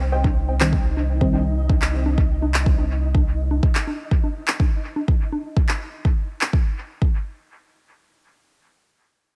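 A steady, straight 4/4 pulse at 124 BPM drives this hypnotic, cavernous dub techno fragment in C minor, cut from a longer piece and resting on a single C minor chord. A deep, layered electronic kick sits up front and runs to 7.1 seconds, joined by electronic handclaps carrying dub echo and tape-warm analog congas, both the claps and congas re-recorded in a small room, with the congas also pumping against the sidechain and sending echoes. Beneath them a clean, smooth pure sine sub bass holds a dark C2 with a filter sweep until 3.6 seconds, while a grainy, flickering granular texture drifts through its own reverb. Two filtered, detuned sawtooth chord stabs appear briefly: a nasal, background stab with lush chorus and dub echo in the first half second, then a lower, evolving stab with a moving notch and phaser that sounds until 1.4 seconds. The mix is dry overall, its sense of space coming from the echoes and the sidechain pumping.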